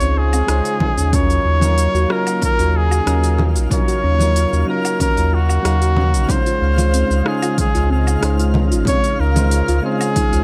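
Wistful and relaxed, this sunset chillout excerpt in Eb dorian moves at 93 BPM in a straight 4/4, drifting between Dbmaj9 and Ebm9 chords. A clear, up-front flugelhorn with vibrato and delay carries the melody over mellow, chorused electric-piano-like synth keys with tremolo, a dark, silky string machine holding chords in the background, and a soft, round pluck spinning arpeggios. A deep sub bass with tube saturation sits up front beneath a smooth R&B kit of hi-hat, rim click, shaker and woodblock, joined at 0.8 seconds by a punchy overdriven electronic kick and vintage, band-limited congas, while a twinkling granular shimmer glints in the background from 1.9 seconds, all under a light reverb.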